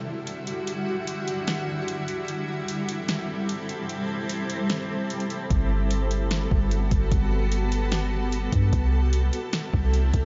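Atmospheric cloud-rap hip hop in G major, moving at 149 BPM with a half-time feel that gives it a blissful, floating mood. A granular cloud pad opens the excerpt at 0.0 seconds, holding sustained chords up front with a blurred, detuned shimmer, its built-in reverb and sidechain pumping letting the sound breathe and evolve. An electronic R&B drum kit joins at 0.3 seconds, pairing a soft kick and fat snare with metallic hi-hats that carry the air of a large room. The opening break gives way at 5.5 seconds, when a round, sine-like 808-style bass arrives deep and dark, its fast attack decaying beneath the harmony. The chords drift from Em9 and Am7 to Gmaj9 and C6, and the whole mix sits in light reverb with its top end kept soft and rounded.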